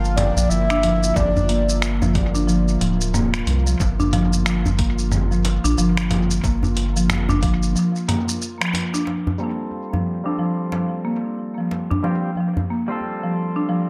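Organic downtempo in G minor at 91 BPM with a 60% swing on the sixteenths, this hypnotic, meditative cut from a longer piece opens on a Gm7 with a breathy, flute-like synth lead melody with chorus and delay that stops at 1.8 s, a buzzing, woody marimba playing filtered arpeggios through tape echo, a smooth detuned pad with sidechain pumping in the background, a round, deep analog bass up front, and a dusty sampler-style kit of finger snaps, hi-hat, shaker and toms re-recorded in a large room. A deep acoustic djembe with delay joins at 0.2 s and a thumpy electronic kick at 1.2 s, before a band accent at 8.6 s gives way at 9.4 s to a twangy, picked clean electric guitar with 12-bit grit, pumping and a filter sweep, all under moderate spring reverb in an echo-heavy mix.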